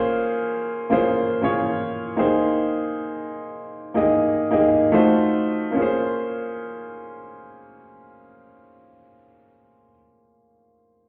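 A bright, woody upright piano carries this short late-night R&B fragment alone, playing accompaniment chords that sit up front in the mix. The mood is sultry and unhurried, with a gentle swing on the sixteenth notes in common time, and the pace eases back over the first 5.8 seconds. The harmony drifts from a minor ninth chord through a major ninth and a tense dominant chord before settling back on the opening minor ninth at 5.8 seconds, where a second section begins. Light reverb and the echo of a stone room surround the piano, yet the whole sound is heard muffled, as if through a wall. Cut from a longer piece, it runs just over 11 seconds.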